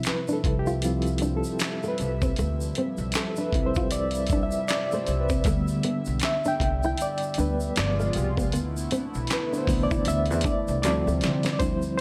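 Sultry and soulful, this swung neo-soul R&B excerpt features an up-front, reedy electric piano soloing with fast tremolo over a shimmering, retro chorused pulse-width pad, a woody pizzicato upright bass, a gritty, compressed sampler-style drum kit with thumpy kick, snare, hi-hat and handclaps, distant finger snaps and tube shaker, and a thumb-plucked nylon-string guitar with audible finger squeak, all set in light small-room reverb, with a drum fill arriving at 10.8 seconds.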